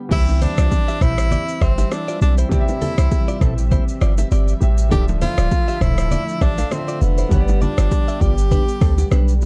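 Afrobeats at 100 BPM with a romantic, breezy swing, where a breathy tenor saxophone carries a jazz-style vibrato melody over a deep, boomy 808-style bass up front, an overdriven electronic drum kit with metallic hats, a bright, delay-touched clean electric guitar riff, ringing congas and bongos, a clear, intimate grand piano and a smooth chorused analog pad in the background, all in a dark, dry production cut from a longer piece.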